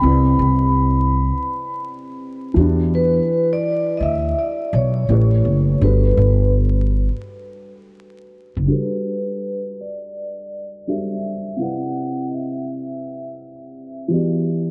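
A lazy swing on the sixteenth notes gives this lo-fi hip hop fragment in 4/4 its easy, unhurried sway, and the mood is dreamy and cosy. A vibraphone played with soft mallets carries the melody, its metallic, ringing tone shaded by a slow motor vibrato, a low-pass filter and a trail of delay. Beneath it, a felt-muted upright piano supplies intimate, boxy accompaniment with a cassette-tape softness, while a growly pizzicato upright bass with steel strings sits up front with a woody, dark weight until it drops out at 8.7 seconds. The harmony drifts through jazzy seventh chords, from Cmaj7 and Em7 through A7 to a long stay on Gmaj7 before returning. The whole mix is soaked in a lush hall reverb and dusted with vinyl crackle, and the vibraphone stops at 14.1 seconds, leaving the piano to close the cut at 14.7 seconds.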